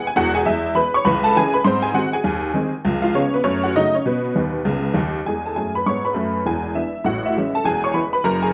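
Close, detailed microphones put a honky-tonk upright piano up front, with a moderate recital hall reverb lending it a touch of space. This short, swinging stride jazz excerpt moves at a brisk 200 BPM in 4/4 with a strong swing feel, and its mood is playful from start to finish. The solo piano sounds detuned and jangly, a bright, vintage tone that still comes across as natural, and it ranges from deep bass notes up into the high treble. The harmony sits in E major, passing through C#m, G#7, C#7, F#m and B before a short piano fill at 4.4 seconds. A new section begins at 5.3 seconds, moving from E through E7 and Amaj7 and back home to E as the clip closes at 8.5 seconds.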